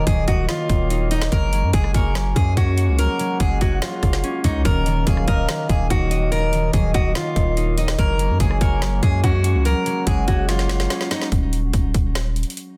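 A half-time trap groove at 144 BPM drives this eerie, melancholic hip hop cut in Eb minor, its up-front electronic kit pairing a hard-clipped kick and woody snare with metallic hats and rim clicks, while a deep, sine-toned 808 bass sustains beneath, moving between Ebm and Gbadd9 chords. A picked dreadnought acoustic guitar carries the melody through a low-pass filter and delay, joined by a dark, round synth lead layered with a sub octave and treated with chorus, phaser and vibrato, as a ringing fingerpicked harp and a reedy, nasal harmonium in the background fill out the harmony. A drum fill at 10.5 seconds leads into a brief closing passage at 11.3 seconds where a filter sweep plays over an Eb5 chord and the harp rings on alone with the drums and bass, all under studio reverb and a dense, heavily limited master.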